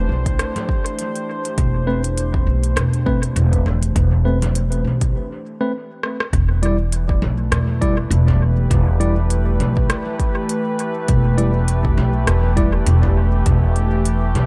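A woody, thumpy upright bass sits up front in this deep, meditative ambient dub cut, its dark pizzicato notes holding down the low end from the first second. Around it a warbling, lo-fi pad sustains nostalgic chords with a slow attack and long release, softened by chorus and its own reverb. An electronic kick with a deep, layered sound and an organic electronic kit of congas, crisp hi-hats and rim clicks carry the 101 BPM groove with a gentle 16th-note swing, the kit trailing dub echo and both sounding tape-warmed, as if re-recorded in a small room. A clean tine electric piano, pushed through a combo amp with medium tremolo and dub echo, adds stabs from 1.9 seconds. The harmony rests on Amadd9 over E before settling onto E minor at 6.3 seconds, just after a brief break capped by a drum fill, all set in a digital ambience.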